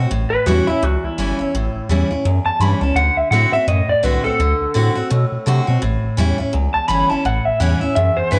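A retro, upbeat rockabilly excerpt moves at 168 BPM in 4/4 with a swung eighth-note feel, set in A mixolydian. A picked steel-string acoustic guitar carries the accompaniment from the start, its full-bodied dreadnought tone sitting up front with audible finger squeak. Beneath it, a round analog bass with a fast attack and a dark, sustained low end anchors the groove. At 0.3 seconds an electric guitar through a small old amp takes the melody, twangy and slightly broken-up, with a lo-fi edge, warbly pitch drift and tape echo. The harmony moves from A7 to D7 at 3.0 seconds and back to A7 at 5.8 seconds, all under a light reverb.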